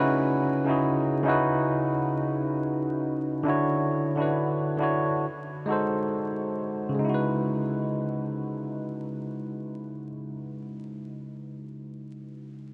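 A barky, bell-like tine electric piano opens the recording, sitting up front and playing chords from C#3 to C#5 through a cassette-tape coloring and a low-pass filter. This brief instrumental hip hop fragment, cut from a longer piece, moves at a slow 68 BPM in 4/4 with a 62% swing on the sixteenths, tuned slightly sharp to A4 = 441 Hz. The mood is melancholic and hazy, with the harmony moving from C#m11 to Dmaj9 at 3.5 seconds, then to a tense G#7b9 before settling back on C#m11 at 7.0 seconds. A huge, wet ambient reverb with a 7.8-second tail soaks the mix in a dreamy wash, while vinyl crackle sits beneath it and the top end rolls off above 10.5 kHz. The piano plays on until 12.7 seconds.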